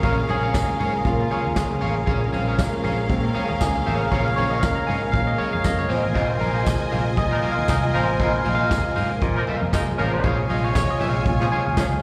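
A barky, lightly overdriven tine electric piano takes the solo through phaser and slapback echo in this danceable, driving disco passage with a 16th-note swing, backed by lush studio strings, a twangy, slightly broken-up guitar, a mellow tonewheel organ on a slow rotary speaker, a punchy fingered bass, a dark brushed drum kit, hard-hand congas and a jingly tambourine, while tight, vintage horn stabs enter at 7.3 seconds, all heard as a live gig through the venue's PA with recital hall reverb.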